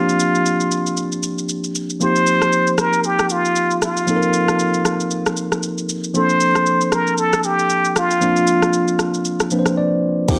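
Amapiano at 116 BPM in Bb major, relaxed with a swung sixteenth-note feel, built on Bbmaj9 and Eb69 chords in this short cut from a longer piece. A breathy, whispered trumpet with a plunger mute carries the jazz-style solo melody up front through a digital delay, beside a clean tine electric piano heard through built-in speakers that adds a fill from 9.5 seconds. An electronic afro-pop drum kit with a deep kick, rim click, shaker and crash cymbal drives the groove, and a round, dark log drum bass lands only at 10.3 seconds, all in a light reverb with digital ambience.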